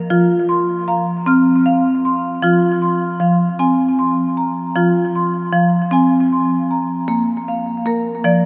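A lone marimba played with medium hard mallets opens this brief clip, cut from a longer piece, with a single F5 ringing out first. It is hypnotic, gentle meditative world music in F minor, moving at 52 beats per minute in a straight 6/8 feel. The rosewood bars give a woody, dark tone that stays smooth and percussive, and the marimba sits up front as it ranges from F3 to F6 through an analog delay. An F minor chord settles in at 2.4 seconds, and the harmony turns to B-flat at 7.1 seconds before the passage closes at 8.5 seconds. A cathedral reverb with a long 5.8-second decay soaks the whole mix in a dreamy haze.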